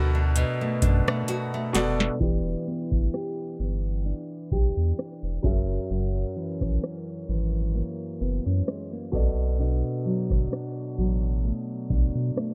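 A lightly swung sixteenth-note groove from a booming, overdriven analog drum machine, with its deep kick, crisp snare and metallic hats, enters at 0.4 seconds and rolls through a fill at 1.3 seconds to drive this moody, longing contemporary R&B excerpt, where fingerpicked nylon-string guitar arpeggios sit up front over a round sine sub bass and a clear, long-sustaining concert grand piano, all in a dry, bright 1980s-style digital mix that moves into a filter sweep from 2.2 seconds.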